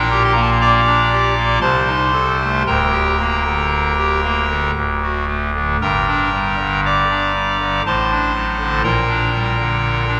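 In a slow triple metre that breathes freely with rubato, this short fragment of a chorale-style classical piece for pipe organ unfolds with a grave, dark mood. A single clarinet reed stop carries the music alone, its hollow, baroque-voiced tone marked by a distinct chiff at the start of each note and placed up front in the sound. The part spans from D1 up to D6 across the full 10.2 seconds, moving through a solemn minor-key chorale progression that passes through a diminished chord and settles on a dominant seventh before returning home. A wet church reverb with a 3.0-second decay surrounds the organ, lending the passage the weight of a large stone nave. The instrument is tuned slightly low, with A4 at 438 Hz.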